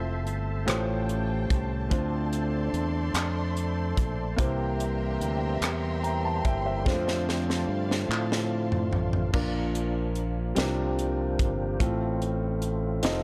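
Slow, soulful and hopeful gospel in 6/8 at 48 BPM in F major, this cut from a longer piece sets a boxy grand piano and a lightly overdriven tonewheel organ with slow rotary speaker and chorus vibrato over a punchy, bright fingered electric bass, while a crisp fusion drum kit with a high-tuned snare enters at 0.3 s, hollow vintage group handclaps play until 8.5 s, and lush, dark bowed strings hold chords until 9.3 s, when a drum fill running from 6.9 s carries the progression from Fmaj7, A7alt and Dm7 on to Bb, C9sus4 and F/A.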